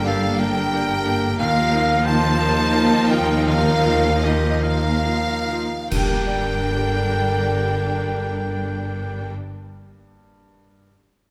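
In a slow, rubato 6/8 at 45-61 BPM that slows from 0.4 to 5.9 seconds, this moving, sorrowful G minor film-score excerpt sets a rich, vibrato-laden violin section's melody over a pure, hollow flute, a clear solo oboe and a very quiet second violin line, with lush violas, a bright piano in the background, mellow French horn chords, close cellos and a dark, woody double bass section beneath, until clash cymbals and concert bass drum land an accent at 5.9 seconds and the piano carries on alone to 10.9 seconds in a moderate scoring-stage reverb.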